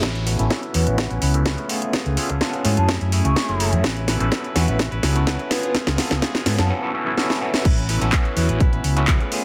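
A straight 4/4 groove at 126 BPM drives this sunny, feel-good slice of filtered disco house in A major, cut from a longer piece. A punchy electronic kick and an up-front house kit with a cracking snare, handclaps, hi-hat and crash cymbal share a tape-warm, small-room character, and drum fills run through a build-up under a filter sweep until the drop lands at 7.7 seconds. Beneath them, a dark, round hollow-body bass sits forward, while a clean, twangy, directly recorded electric guitar plays a compressed, picked riff. A barky, gritty tine electric piano adds accompaniment with fast tremolo and phaser through a combo amp, and the bass, guitar, piano and flute each pump against the kick and pass through low-pass filtering. A pure, mellow concert flute with vibrato and a soft attack appears in the background with delay in brief phrases from 2.8 seconds. The chords move from A69 through C#7b13 and F#m9 and back again, all set in light reverb.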